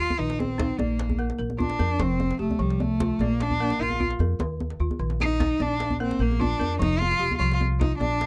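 A bowed cello leads this joyful, flowing West African fragment in 12/8, carrying the melody up front with vibrato, portamento and a soft, expressive attack. Around it a round, woody balafon struck with rubber mallets spins arpeggios, a dark pizzicato upright bass on steel strings anchors the low end, and a deep djembe played with soft hands joins at 0.1 seconds. The close, detailed sound carries little reverb, keeping the cello solo intimate through the whole 8.3-second passage.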